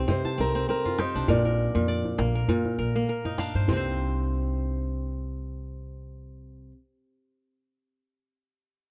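A bright, ringing kora spills crisp arpeggios up front alongside a dark, fingerpicked steel-string guitar melody with audible finger squeak, while a medium-tuned djembe taps softly by hand, close and dry, until 4.0 seconds, and a woody pizzicato upright bass anchors this flowing, reflective fragment of West African string music in a small, lightly reverberant room with the close feel of a 1970s studio.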